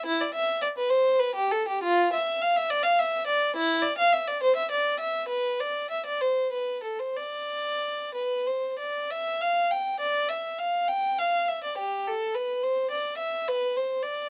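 A lone bowed violin opens this serene, radiant baroque-style suite movement, played in a flexible, rubato 6/8 at roughly 60-73 BPM in dotted quarters. The period-style, gut-string tone is rich and reedy with a light vibrato, sitting up front between E4 and G5. A new section begins at 9.1 s, and the dark production adds a touch of light reverb to this short cut from a longer piece.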